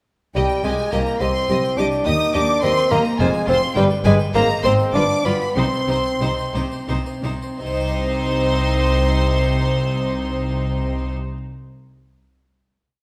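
In a straight 3/4 pulse that moves between 82 and 106 BPM and slows from 2.9 to 7.6 seconds, this short, complete baroque-style concerto movement in C minor feels stormy and driving. A rich, close violin section carries the expressive, vibrato-laden melody while a mellow solo bassoon doubles the tune at the octave. Beneath them, a clear, distant second violin section and a focused, lush viola section fill in with repeated notes and sustained chords. An intimate cello section with soft attack anchors the harmony on repeated and sustained bass notes, and a smooth, even double bass section doubles that line. A close-miked, dry, brilliant harpsichord adds rippling figuration across its octave strings and rings on alone until 11.4 seconds. The harmony runs from C minor through E-flat, F minor, G, A-flat and G7 before returning home, and the opening ritornello settles into a final chord at 7.6 seconds, all bathed in wet recital-hall reverb.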